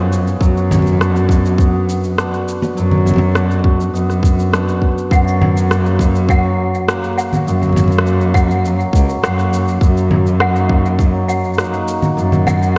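A cimbalom opens with ringing, shimmering arpeggios from F#2 to G#4, its hammered tone trailed by delay, while a dark, bowed cello holds the bass between C#2 and F#2 with expressive vibrato and portamento, close and up front. This short folktronica excerpt in F# major moves at 102 BPM in a straight 4/4, hopeful and pastoral in mood. Electronic cabasa, congas and rim click, produced and set in studio reverb, join almost at once, and a tight electronic kick sits up front from 0.4 seconds, with the harmony passing from Bm/F# to F# and then D#m7/F#. At 5.1 seconds a clanky, bell-like toy piano enters as a second line on F#5, slightly out of tune and soft, its wooden hammers coloured by ensemble chorus and delay. The whole mix is dreamy and soaked in a lush hall reverb, with vinyl crackle beneath.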